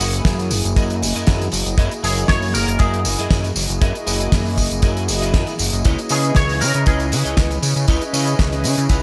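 Nu-disco with a cosmic, groovy mood at 118 BPM, cut from a longer piece, where a fat, detuned sawtooth bass with tube saturation and sidechain pumping sits beneath a dark, smooth analog pad with chorus and 12-bit sampler grit, a clean picked guitar riff with ensemble chorus and delay, and a damped 70s kit of fat snare, hi-hat and tambourine in gated reverb, with a tight, up-front kick entering at 0.2 seconds and a twangy envelope-filtered guitar melody appearing from 2.0 to 7.6 seconds over F#13 and C#m9 chords in a bright 1980s-style digital production.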